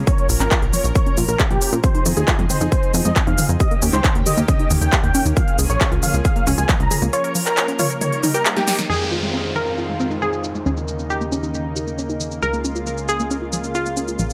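Driving straight 4/4 at 136 BPM, this uplifting trance cut in F minor has an emotional pull, built on an overdriven electronic kick and a big-room dance kit with a punchy snare, crisp hats, handclaps, shaker and toms, whose hats, percussion, snare and toms pass through low-pass filtering. The kick sits up front until 6.8 seconds, while a plucky analog bass with a funky, wave-folded bite pumps under the sidechain throughout, moving through Bbm, Fm7, Eb7 and Db6. A lush unison pad holds sustained chords in a thick, chorused wash, and a tight sequenced synth runs mellow arpeggios in the background with chorus, digital delay and a filter sweep. Over this, a huge, euphoric supersaw lead carries the melody with vintage 12-bit sampler grit and digital delay, ending as a drum fill and band accent mark the turn at 8.9 seconds. From there, a glassy wavetable pluck with a crystalline, evolving shimmer takes up a second line while an electronic downlifter descends beneath it, all set in light reverb.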